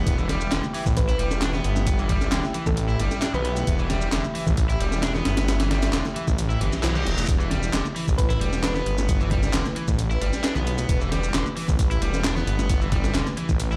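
A thick, menacing detuned saw bass sits up front in this swaggering, energetic breakbeat excerpt at 133 BPM in E minor, its saturated sawtooth tone beating low beneath a lone E minor chord. A sampler-style breakbeat kit drives it in straight 4/4, with a gritty, compressed sound, a thumpy kick and a high-tuned snare over hi-hat, while layered electronic shaker and handclaps sit in the background and damped, thick-skinned congas add a very quiet acoustic layer. A cranked stack guitar plays a bright, overdriven, picked riff roughened by tube saturation, 12-bit sampler grit and delay. Behind it a deep, moody pad holds sustained chords with chorus, built-in reverb and sidechain pumping, and a round, tine-like synth pluck with an AM radio tint appears from 1.0 to 3.5 seconds and again briefly at 8.2 seconds. A reverse cymbal marks the midpoint at 6.6 seconds, and the whole mix sounds as if played on a big system in a bare room with large studio reverb.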